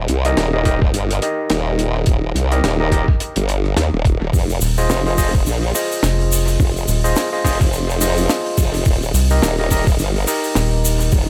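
A swung sixteenth-note glitch hop groove struts with a playful, swaggering air, anchored from the start by a saturated, chorus-thickened formant-sweep wobble bass and a dry, dark reggae drum kit whose high-tuned snare, rim clicks and hi-hat trail off in studio reverb and dub echo, while a gritty, pitched-down electronic kick thumps in moments later. A barky, overdriven tine electric piano adds sidechain-pumped stabs through a low-pass filter and dub echo. A grainy egg shaker slips into the background at 4.3 seconds, and a rubbery, hollow square bass joins up front at 4.6 seconds, all set in an echo-heavy small-room mix cut from a longer piece.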